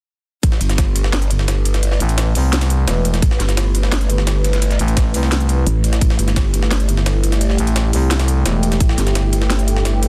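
Dark technical drum and bass with a dark, futuristic mood, cut from a longer piece and built over a single Amadd9 chord. A growl bass sits up front from 0.4 seconds, its sine core distorted, tube-saturated, compressed and shaped by a formant filter into an aggressive wobble, with chorus and sidechain pumping. A thick FM bass joins at 2.0 seconds, adding a second growling, sustained low layer with a fast attack. Above them, a deep, moody analog pad of detuned sawtooth and triangle tones with a sub octave enters with a slow attack at 1.0 seconds, holding chords with chorus and sidechain pumping. Two drum kits run together: a produced kit with a cracking snare and crisp hats, and a quieter sampler-style jungle kit that is pitched up and gritty, with a high-tuned snare, ride and filtered cymbals, while a tight, up-front electronic kick appears in short stretches, all three carrying studio reverb and a tape-warm sheen. 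The mix is dry, dense and heavily limited in a modern style.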